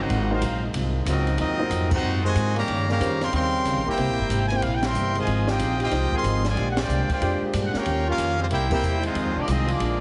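Big band swing in Eb major at 186 BPM, this joyful, brassy excerpt puts a brilliant trumpet section up front on the melody, with a clear trombone section carrying a second line in the background and a very quiet trombone section holding sustained chords. A woody pizzicato upright bass sits up front, while a dark, clean hollow-body electric guitar and an intimate concert grand piano with audible action noise comp in the background, and an open drum kit with dark cymbals, a high-tuned snare and a boomy kick drives the swing. The full band hits accents at 1.9, 4.8, 6.7 and 8.7 seconds over chords such as Ab13, Eb13 and Fm7, all heard through a moderate recital hall reverb and a heavily compressed, radio-like sound.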